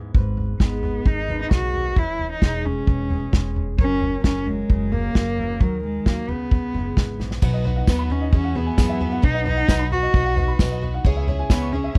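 Indie folk at 132 BPM in B major, hopeful and building, where a bowed, boxy cello with vibrato sings the melody up front over fingerpicked full-bodied steel-string guitar, dark woody pizzicato upright bass and a small-room drum kit played with bundle sticks, until a drum fill at 7.2 seconds ushers in shimmering octave-doubled twelve-string guitar, short-sustain upright piano arpeggios and a jingly tambourine in the background, all in a dry, close 1970s-style studio sound cut from a longer piece.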